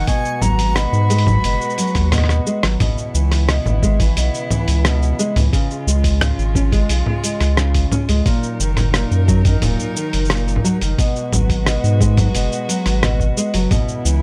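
Autumnal and wistful, this folktronica excerpt moves at 88 BPM in C# dorian, with a fingerpicked nylon-string guitar playing arpeggios through tape echo beneath dark, bowed string-quartet chords full of vibrato and portamento, while a round, deep analog bass with tube saturation sits up front. A pure, straight-toned concert flute with tape echo carries the melody only until 2.5 s, and a very quiet reversed, granular texture drifts through the opening and returns at 13.7 s. Muffled, pitched-down sampler drums (a thumpy electronic kick plus cabasa, congas, hi-hat and rim click) keep a straight 4/4 pulse, with a drum fill at 2.1 s, in a dry room.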